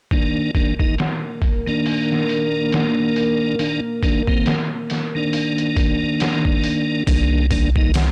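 Trip hop at 69 BPM in C minor with a swung 16th feel, cinematic and melancholic, where an up-front tonewheel organ with chorus vibrato, key click and 12-bit sampler grit carries rootless Cm7 harmony over a moody, detuned analog pad and a pitched-down, gritty sampler-style drum kit with a thumpy kick and low-pass-filtered hats, snare and room, until a round, deep analog bass with tube saturation enters on C2 at 7.1 s, within a blown-out, overdriven recording with light reverb.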